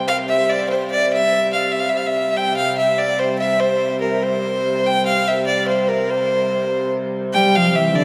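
This festive, ancient-sounding medieval dance in a straight 6/8 opens on a dark, woody hurdy-gurdy drone that sits low and distant, sounding from the very start. Almost at once a fiddle takes the melody, its tone rich and smooth with a light vibrato, one bowed player placed up front and given a slapback echo. At 7.3 seconds a single viola da gamba joins with a second line beneath, its fretted, bowed voice warm and intimate, with a soft attack, an airy bow and a ringing quality, also touched by slapback echo. The whole passage sits in a vast, echoing space, with a long cathedral reverb that lends a hallowed sense of distance. This is a short cut from a longer piece, ending just as the gamba arrives.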